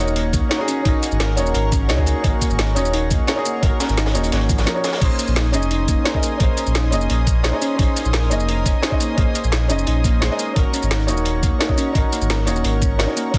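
Dreamy and melancholic, this liquid drum and bass excerpt sits on a deep, up-front sine sub bass with octave, an overdriven drum and bass kit with a woody snare and bright hats, a knocking overdriven electronic kick entering at 0.3 seconds, and a dark, gritty breakbeat kit tucked in the background. Over them a felt-muted upright piano plays soft, intimate accompaniment with audible action noise and delay, while a harp-like synth pluck rings out arpeggios through chorus and digital delay. A rich, floating bowed string section holds sustained chords in the background with sidechain pumping, moving from Ab9sus4 to Bbm11 at 5.0 seconds and back at 10.6 seconds, all within a dense, heavily limited modern master.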